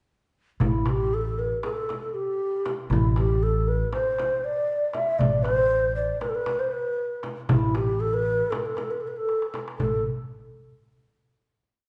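A breathy, reed-cane ney leads this short, hypnotic and longing Turkish makam piece, its tongued modal melody in A ussak full of ornaments and vibrato, sitting up front with rolled-off highs. A woody, growly pizzicato upright bass holds a low A beneath it, landing on the low drum strokes, while a clay-shelled darbuka and a small, bright frame drum play low and high stroke patterns in 9/8 at 235 BPM counted in eighths. A drum fill at 9.3 seconds leads into a final note held from 9.8 seconds, and the whole recording rings in a reverberant recital hall.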